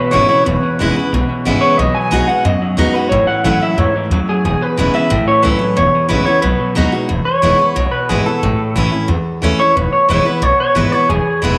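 Rockabilly at 181 BPM in E major, upbeat and rowdy, with a twangy, slightly broken-up electric guitar melody up front, colored by spring reverb and tape echo, over a full-bodied picked acoustic guitar, a thumpy gut-string upright bass and a second small-amp electric guitar riffing low until 7.1 seconds, when a clean electric guitar solo enters for the rest of the excerpt.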